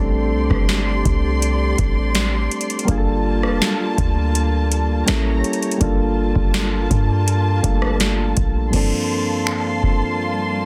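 Soft, round electric-piano-like synth keys with a warbling chorus open this longing, late-night contemporary R&B fragment alongside a lush, bowed string section pumping under sidechain and a deep, boomy 808-style bass, before a booming analog drum machine enters at 0.5 seconds with a deep kick, crisp snare, metallic hi-hats, finger snaps, rim clicks and crash cymbal, all dry and dense in a heavily limited modern mix as the bass drops out at 8.7 seconds and the closing Gm11 rings on keys and strings.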